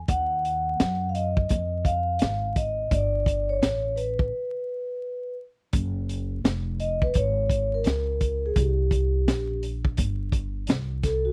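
This dry, close 1970s-style studio recording has little reverb and a layer of vinyl crackle, and it is cut from a longer piece. It is relaxed, warm jazz-hop in 4/4, with a swung sixteenth-note feel. A crunchy breakbeat kit sits up front in a small-room sound, with a dark, rolled-off top, a tight kick, a high-tuned snare and hi-hat. The upright bass is played pizzicato on steel strings and has a woody tone, while the vibraphone, struck with soft mallets and its motor off, carries a mellow, ringing, metallic solo through both sections, with the change at 5.7 seconds. A break arrives at 4.3 seconds, and the harmony moves through D#madd9, Gadd9 and F#maj9 before landing on a bare C5.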